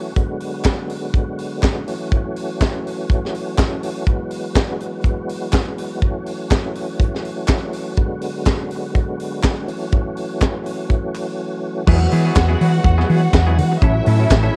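A tight funk drum kit sits up front in this sultry, danceable disco excerpt at 123 BPM in 4/4, its high-tuned snare, tight kick, hi-hat, crash and handclaps carrying a 16th-note swing with a small-room, natural sound. Underneath, a percussive tonewheel organ holds sustained chords, lightly overdriven with key click, chorus vibrato and a fast rotary speaker, moving through G#m7b5, F#m7, Eadd9 and A6. A very quiet group handclap adds crisp, dry human claps until a brief break at 11.4 seconds. At 11.9 seconds the second section opens as a round, dark hollow-body bass enters up front, together with a bright, clean, picked semi-hollow guitar and a distant, woody string section bowing a lush second line with vibrato. The whole piece has the softened, homemade character of a cassette recording set in studio reverb.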